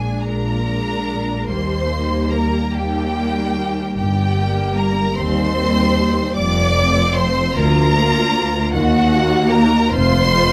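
The first violin section carries the melody high above the ensemble, its lush, vibrato-laden tone entering with a soft attack and singing expressively between Gb5 and D6. This is a slow romantic movement for string orchestra in Bb major, moving in a rubato 6/8 at about 50 beats per minute in dotted quarters, with a lyrical, serene mood. Beneath it, the second violins trace a more distant second line, while the violas supply a smooth, even accompaniment from further back. The cellos give the bass a dark, expressive weight, and the double basses reinforce it with a focused low end and a smooth top, reaching down to F1. The harmony drifts from Bb7 through Eb, Gm and Cm/Eb to F and Bb/D, then turns briefly to Ebm at 8.7 seconds before settling on F again. A moderate studio reverb gives the strings a gentle sense of space across this 10.5-second portion cut from a longer piece.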